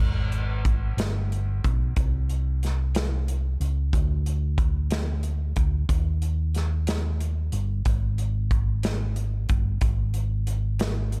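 Slow gospel in a straight 6/8 at 61 BPM, this short excerpt from a longer piece carries a jubilant, hopeful mood. A fingered electric bass opens at 0.0 seconds with a dark, round, amped tone that sits up front in the low register. From 0.3 seconds a modern studio drum kit joins with hi-hat, a punchy kick and a medium-tuned snare in a pumping room sound, all in a dry mix with little reverb.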